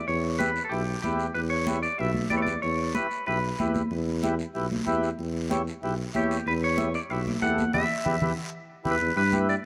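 Driving and passionate, this cumbia excerpt moves at 188 BPM in E dorian over a steady E minor chord, with an up-front, lightly vibrato tuba carrying the bass line beneath a reedy, full accordion accompaniment. A twangy, picked electric guitar with spring reverb plays the melody up front, pausing after 3.7 seconds and returning at 6.2 seconds. High-tuned, bright congas and a raspy, close guiro keep the pulse, and the band hits an accent from 7.7 seconds, capped by a drum fill, all in a light reverb.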